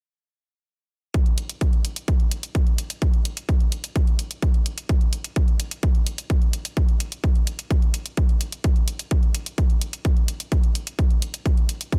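A dense, heavily limited modern master with little reverb frames this brief EDM excerpt, cut from a longer piece, running at 128 BPM in a straight 4/4 with an uplifting, triumphant mood. From 1.1 seconds an up-front, punchy electronic kick drum, layered and overdriven with a large-room re-recording, drives the groove, while an overdriven, layered electronic hi-hat, also re-recorded in a large room, sits much lower in the mix above it.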